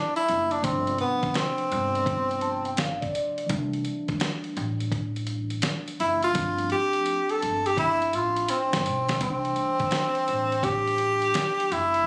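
A warm, close-miked tenor saxophone with light vibrato and a soft attack opens this relaxed, cool jazz-hop excerpt alongside a mellow tine electric piano that adds a fill from 2.1 to 3.5 seconds, while a gritty, compressed sampler-style drum kit with a thumpy kick and fat snare swings up front over woody pizzicato upright bass, and a drum fill from 6.4 seconds leads into a new section at 9.2 seconds, all heard in a small room with the feel of a phone recording.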